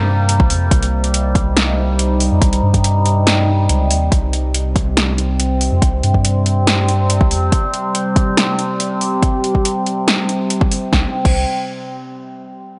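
Cavernous and brooding, this deep dubstep fragment opens straight into a drop, cut from a longer piece and moving with a heavy half-time feel. A resonant sawtooth-and-sine drone holds sustained chords with a slow attack and long release, its moving overtones shimmering through chorus, phaser and its own built-in reverb at the front of the mix. Beneath it, a round, soft sub bass built from triangle and square waves sits deep and sustained, dropping away at 7.5 seconds and returning only briefly near 10.9 seconds. The overdriven, layered electronic drums are up front and sound re-recorded in a large room, with a punchy snare, metallic hi-hats and crash cymbal over a deep kick. The kick falls out at 3.3 seconds before the music moves into a new section, and the overall sound carries light reverb and a darkened top end.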